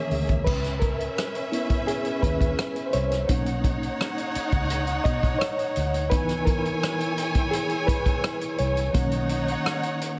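Silky and cinematic, this short excerpt of lush 1970s-style soul moves at 85 BPM in C# dorian, where a reedy, slightly out-of-tune electric piano with fast tremolo carries a solo from 0.5 seconds over C#m7 and Bmaj9 chords, alongside an expressive bowed string section with vibrato and portamento, a dark, foam-muted fingered electric bass with a round, punchy tone, and an up-front vintage drum kit with a tight kick, hi-hat, rim click and crash, all set in light studio reverb.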